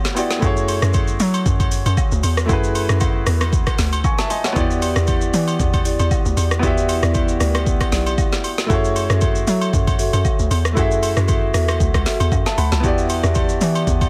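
Swung sixteenths at 116 BPM in 4/4 drive this late-night, deep amapiano excerpt, where an up-front, overdriven afro-pop drum kit with a deep kick, woody snare, metallic hats, rim click and shaker sits beside agogo bells and woodblock in a live room, a hollow, bouncy log drum bass carries the low end, a clear, intimate grand piano with audible action noise and long sustain accompanies over F#m7 and Em7, and close-miked marimba stabs with delay join at 4.6 seconds, set in studio reverb with a dense, heavily limited modern master.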